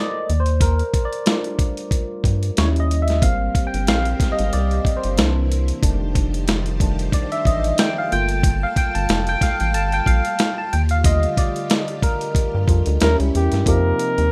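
A barky tine electric piano with analog chorus leads this smooth, late-night, lightly swung R&B and neo-soul excerpt through a combo amp, backed by a rubbery, bouncy square bass, a gritty, compressed sampler-style drum kit with a thumpy kick and hi-hat, and shimmering string machine violins in the background from 3.2 s, before a breathy flugelhorn with vibrato and scooped notes enters at 13.0 s, all in a rough home demo mix with light reverb.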